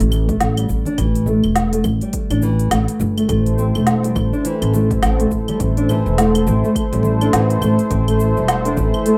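A woody, pizzicato upright bass sits up front in this meditative, warm organic downtempo piece, holding to its lowest register at 104 BPM in 4/4 with a 16th-note swing. A small, thumb-plucked nylon-string guitar plays arpeggios through a low-pass filter sweep and delay, finger squeak audible, over a rootless Dsus2 colouring in A minor pentatonic, tuned to A4 = 435 Hz. The drums blend a produced organic electronic kit, with a woody snare, crisp hats, claves and shaker re-recorded in a large room, and a punchy, layered electronic kick, while very quiet, close congas and bongos add acoustic texture beneath. At 3.3 s a smooth, detuned sawtooth analog pad enters on an A minor chord, its soft attack and bright top shaped by chorus, tremolo and sidechain pumping. The rough home-demo mix has a wet studio ambience with a short tail, and this cut runs just 9.2 seconds from a longer piece.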